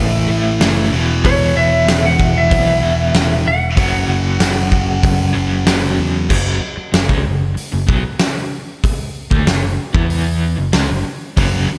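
A huge, up-front arena drum kit drives this menacing hard rock fragment at 95 BPM in a straight 4/4, its punchy kick, fat snare and bright cymbals entering at 0.6 seconds with crash, hi-hat, kick and snare all in play. Underneath, a growly, amped picked electric bass holds the low end while an overdriven semi-hollow guitar, warm and hollow-bodied with tremolo, churns out a riff for the whole stretch. A high-gain distorted guitar joins the riffing with a searing edge until 6.3 seconds, when the piece moves from its opening section into the second, returning only for a brief moment at the very end. Above it all, a twangy, compressed, slightly broken-up lead guitar sings a short high melody in F# minor before falling silent at 5.6 seconds. The chords move between A5, E5 and F#5, and a lush hall reverb gives the whole mix a big arena sound.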